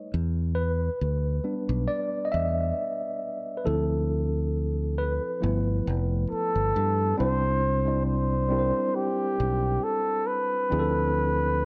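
A lightly swung sixteenth-note groove carries this soulful neo-soul R&B excerpt, where a clean, up-front tine electric piano opens over Em7, Dm7 and G13 changes with a punchy, direct fingered electric bass beneath it, before a breathy, whispered flugelhorn with light vibrato and a slapback echo enters at 6.3 seconds to sing an intimate melody as the harmony settles onto C, all wrapped in light reverb and the worn, warbling pitch drift of old cassette tape.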